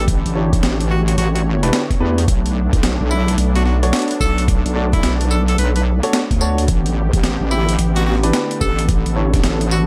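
A dry mix with little reverb carries this short, funky and playful glitch hop passage, cut from a longer piece and moving at 109 BPM in 4/4 with a 64% swing on the sixteenths. A heavy, up-front wobble bass dominates the low end, its detuned square and sine layers thickened by chorus and tube saturation. An electronic kick with a thumpy, pitched-down, sampler-style character and a gritty boom bap kit of hi-hat, high-tuned snare and tambourine both come in at 0.1 seconds, each compressed and re-recorded in a large room. Over them, a dark, worn grand piano plays stabs roughened by vintage 12-bit sampler grit and digital delay, its action noise audible and its pulse tied to sidechain pumping, while a smooth sawtooth analog pad with a soft attack and long release holds chorused chords in the background, pumping along as well. A bright, close-miked tenor saxophone carries the solo melody with vibrato and digital delay, as the harmony moves from A9sus4 to Bm9 at 2.3 seconds and returns to A9sus4 at 6.7 seconds.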